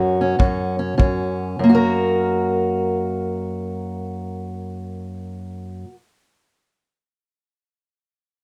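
A fingerpicked steel-string parlour guitar sits up front with a dark, boxy tone, carrying the melody in free time through a short, swaggering and gritty acoustic country blues excerpt that slows down over its first 1.6 seconds, while a tight, natural kick drum played with brushes sounds briefly from 0.4 to 1.2 seconds in a moderate booth ambience.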